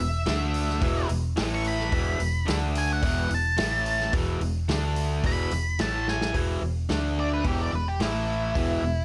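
Blues rock power trio with a southern rock lean, this raunchy, driving 109 BPM excerpt in straight 4/4 features a dark, fuzzed octave lead guitar soloing from the start through 6.3 seconds with slapback echo and plate reverb over a bright, double-tracked overdriven semi-hollow guitar riff, a round, foam-muted fingered electric bass, and a vintage drum kit with a punchy kick and rolled-off top entering at 0.3 seconds and marking the new section with a fill at 6.1 seconds, all in a lightly reverberant room.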